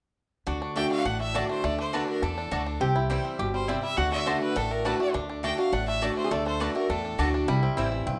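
A driving, rustic bluegrass excerpt in D mixolydian at 205 BPM opens at 0.5 s with a boxy, bright parlour acoustic guitar picking accompaniment, twangy banjo arpeggios, a woody pizzicato upright bass up front and a nasal, metallic slide resonator guitar in the background on a second line, moving between D and C chords. At 0.8 s a biting, clear fiddle takes the bowed melody up front with light vibrato, while a double-strung mandolin adds picked stabs. The rough home demo mix sits in a wet studio reverb.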